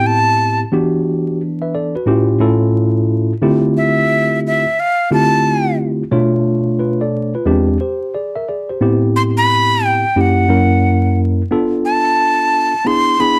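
A breathy, bright jazz flute and a mellow tine electric piano sound together from the opening moment, setting a cool, nocturnal hip hop mood at 89 BPM in A minor with a lazy swing on the sixteenths. The flute carries the melody high in its range, its reedy tone marked by vibrato, a crisp chiff on each attack and a short slapback echo. Beneath it, the electric piano supplies accompaniment across a broad span, its worn, slightly out-of-tune character giving the chords a lived-in feel while staying clean, direct and up front. The harmony moves through jazzy extended chords, from Am7 and Dm11 through altered dominants such as E7alt and F#7b9 before settling on E7 near 12.9 seconds. A small room reverb and a layer of vinyl crackle wrap the whole passage, an excerpt taken from a longer piece that runs 13.4 seconds.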